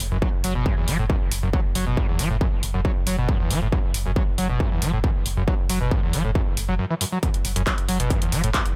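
A screaming, squelchy acid line cuts through this dark, hypnotic slice of driving peak-time techno, its resonant sawtooth tone carrying a filter sweep, fast attack and decaying notes between E2 and F#3, roughened by distortion and thickened with analog chorus, tape echo and sidechain pumping. Underneath, a deep, thick saturated sub bass sits on F#1 in F# minor, its sine tone sustained and pumped by the sidechain, warmed by tube saturation and rounded by a low-pass filter. A distorted, overdriven electronic kick drum sits up front from 0.2 seconds, alongside a layered techno drum kit of handclaps and hi-hats, with the hats pumping against the sidechain. The groove runs at 137 BPM in a straight 4/4, tuned to A4 = 438 Hz. The sound is dry, with little reverb, and this short cut from a longer track holds one relentless section for 8.8 seconds.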